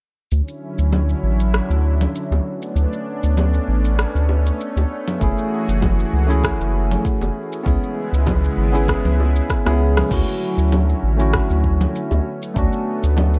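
A dry mix carries this wistful sunset chillout excerpt at 98 BPM, with a light swing on the sixteenths and chords drifting through Dmaj9, Bm9, F#m9 and C#m7. A lush, detuned sawtooth pad with chorus holds sustained chords over a round, dark analog bass sitting up front. A tape-warm deep house kit of congas, rim click, shaker and crash is joined by tight, high-tuned bongos in the background. At 5.2 seconds a deep, layered electronic kick and mellow, wave-folded electric-piano-like synth keys arrive, the keys treated with chorus, a low-pass filter and digital delay, and a drum fill at 9.5 seconds leads into the closing section.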